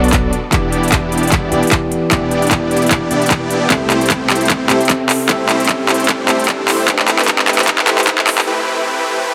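Future bass in E minor at 151 BPM with a half-time, lightly swung feel, this lush, dreamy build-up moves through Em7, C6 and Am9 under a long shimmer reverb. Huge, detuned supersaw chords sit up front with sidechain pumping, delay and a filter sweep, joined by a barky tine electric piano, lightly overdriven through a combo amp, and a deep, mellow sine 808 bass in the background. A crisp-hatted big-room kit with handclaps and a punchy, tape-warm electronic kick drives a drum fill alongside a very quiet riser, until the drums drop out at 8.5 seconds for a brief break.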